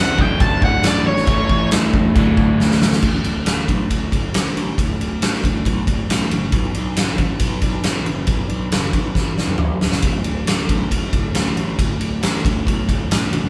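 Anthemic and cathartic, this quiet-loud alternative rock passage in D major drives along at 137 BPM in a straight 4/4, cut from a longer piece. It opens with a dark, distorted octave-fuzz lead guitar carrying the melody up front, ending at 1.7 seconds, over a crunchy, double-tracked overdriven guitar riff moving through D5 and A chords. A growly, bright fuzz bass sits in the background throughout, while a huge arena drum kit with a punchy kick, medium-tuned snare, crash, ride and toms comes in at 0.2 seconds and sounds natural and up front. After a drum fill, the riff guitar drops out at 3.0 seconds and the arrangement shifts to a clean, compressed twelve-string electric guitar playing arpeggios in the background over a D chord, with another drum fill arriving around 9.2 seconds. The band sounds like it is playing live together in one room, with moderate studio reverb around the whole performance.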